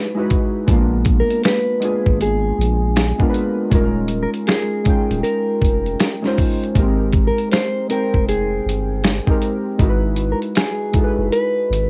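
A swung 79 BPM lo-fi hip hop groove in 4/4 opens this mellow, dreamy excerpt, with a dusty, gritty sampler-style kit of thumpy kick, snare, hi-hat and finger snaps entering at 0.3 s up front, a round, deep dub sub bass joining at 0.7 s, warbling, detuned synth keys with chorus and cassette-tape wobble, and a dark, clean phased electric guitar melody drifting through chords from Emaj7 to Abmaj9 in a moderate reverb with home-cassette grain.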